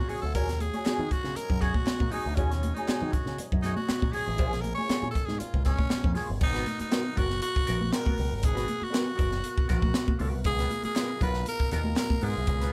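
Sly and funky, this live-in-one-room funk cut at 119 BPM in 4/4 features a growling, raspy tenor saxophone that takes a solo over the opening 6.4 seconds. A punchy, high-tuned fusion drum kit sits up front beside a bright picked bass run through an envelope filter, while a dark, clean hollow-body jazz guitar with wah, a very quiet overdriven tonewheel organ with key click and slow rotary speaker, soft-handed congas in the background, and hollow group handclaps fill out the groove. The chords move from Ebm11 to Bbm7, then from a rootless Abm9 to Db13, under light reverb in this excerpt from a longer piece.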